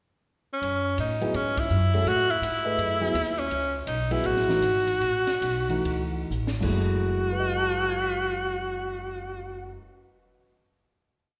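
A swung 4/4 pulse drives this short, cool and spiritual modal jazz piece, which slows from 3.5 seconds before a drum fill carries it into a held final chord at 6.8 seconds. Up front, a bright, forceful tenor saxophone states motif-based call phrases with vibrato over a woody walking pizzicato upright bass and a compact cocktail drum kit playing a ride pattern with sticks, with dark cymbals, a high-tuned snare and a punchy kick. A mellow concert grand piano adds syncopated quartal comping with deep bass, and it lingers alone until 11.2 seconds in a reverberant hall.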